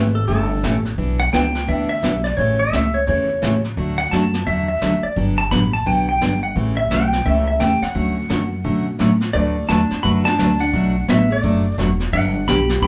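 A small, reverberant room holds a band playing live together, giving this short cut from a longer western swing tune a close, lively ambience. At 172 BPM in 4/4 with a swung eighth-note feel in D major, the country mood is playful and cheerful. A twangy, compressed lap steel carries the melody up front with a clean slide tone, while a bright, full-bodied dreadnought acoustic guitar picks the accompaniment on fresh strings. The pizzicato upright bass sounds woody and growly, and a jazz kit played with brushes enters at 0.3 seconds, sitting mid-forward with a boomy kick, a medium-tuned snare, hi-hat and a rolled-off top. At 9.3 seconds a dark hollow-body jazz guitar adds a picked second line as the chords move through D6, Bm7 and Gmaj7.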